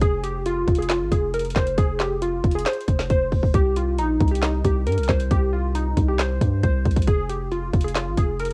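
A brooding, melancholic trap beat opens at once with all three parts: glassy, detuned digital keys carry the melody through chorus, a filter sweep, cassette-tape grit and plate reverb, over a deep, mellow 808-style bass whose sine tones sustain long and decay. The electronic trap kit sits up front in half-time at 136 BPM, pairing a hard-clipped kick and woody snare with metallic hi-hats and handclaps, all colored by cassette tape. Cut from a longer piece, this 8.5-second passage moves from Fm to C5 at 3.5 seconds and back to Fm at 7.1 seconds, with light reverb and a lo-fi home-cassette character.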